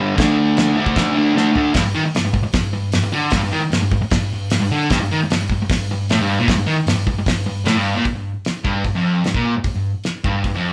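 Garage rock with a swaggering, gritty mood, this short excerpt cut from a longer piece drives along at 152 BPM in G minor, tuned slightly sharp with A4 at 444 Hz. A double-tracked fuzz guitar carries a picked, distorted riff up front from the first moment, while a cloth-damped, thuddy acoustic kit with a fat snare, tight kick and dark cymbals enters at 0.2 seconds and throws in a fill just before the 1.7-second mark. The band sounds like it is playing live in one room, bathed in a wet studio reverb.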